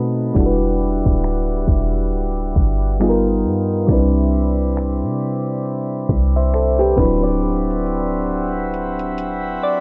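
Soft, round electric-piano-like synth keys with chorus open this tender, romantic contemporary R&B excerpt, alongside a reedy, breathing pedal harmonium and a deep, boomy 808-style bass with tube saturation. A smooth electronic drum kit of finger snaps, hi-hat and soft kick sits in a swung 16th-note feel over Em9, G7alt, Cmaj9 and D13, while a filter sweep runs through the keys. A boxy picked archtop guitar adds brief arpeggios with tape echo from 6.8 to 8.5 seconds, a drum fill begins at 7.4 seconds, and the keys close with a fill of their own, all in a dry, gritty hardware recording with digital ambience and a low-pass filter.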